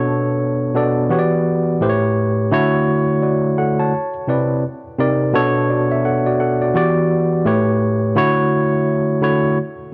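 A barky tine electric piano opens this short R&B fragment on its own, playing solo from 0.0 to 9.6 seconds across a range from A2 to A5. The mood is soulful and smooth, with an 85 BPM pulse in 4/4 and a 61% swing on the sixteenths, centered in D major. Sitting up front as if heard through its built-in speakers, the piano sounds clean yet worn and slightly out of tune. The harmony moves from Bm7 through Em9 and A9 to Dmaj7, slips through Cmaj7 and Cm7, then returns to Bm7, Em9, A9 and a final Dmaj7 at 8.2 seconds. A moderate plate reverb with a 3.5-second tail adds space, while the whole recording carries the warbling pitch drift of old, worn cassette tape.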